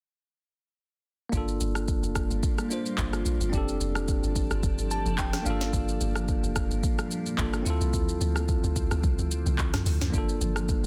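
A deep, late-night amapiano groove drops in at 1.3 seconds, with a produced electronic drum kit up front (deep kick, sharp snare, metallic hats, claps, rim clicks, shaker and toms) riding a lightly swung feel over a dark, round log drum bass with a fast, percussive attack. A bell-like, bright tine electric piano accompanies cleanly over the Gm7, F69 and Dm7 changes and adds a short fill from 4.6 to 5.7 seconds. From 2.3 seconds a mellow, cloudy granular pad blooms slowly underneath, pumping with sidechain compression and soaked in its own reverb, while the rest of the dense, heavily limited mix stays dry.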